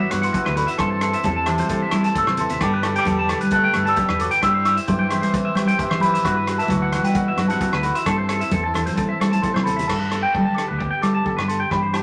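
A warm, wet studio reverb surrounds this carefree 12-second highlife excerpt in G major at 132 BPM, where a bell-like celesta carries the melody over twangy, up-front electric guitar arpeggios, a round, dark fingered bass, a picked jumbo acoustic guitar, buzzy combo organ chords that drop out near 9.9 seconds and a clear, vibrato-tinged tenor saxophone second line that drops out near 9.4 seconds, while a punchy vintage drum kit with dark cymbals and thick-skinned congas drive it, the kit adding fills at 2.3 and 9.3 seconds.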